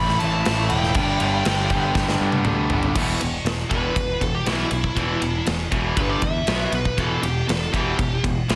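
A dense, heavily limited modern master wraps this hard rock excerpt in a moderately large studio reverb, with the big acoustic drum kit up front: punchy kick, medium-tuned snare, crashes, ride and toms. The mood is heavy and aggressive at 119 BPM in a straight 4/4, centred on E minor. A growling picked bass, overdriven and punchy, anchors the low end while three riffing guitars sit in the background: a bright overdriven electric, an overdriven semi-hollow body with a hollow edge, and a double-tracked high-gain distorted guitar that drops out at 3.0 seconds after a drum fill. The biting lead guitar, overdriven with a slapback echo, carries the melody from the very start, and from that point it takes a solo over power chords moving from E5 through G5 and B5 before settling on Em. The lead stops at 8.2 seconds, leaving the band to carry the final moments.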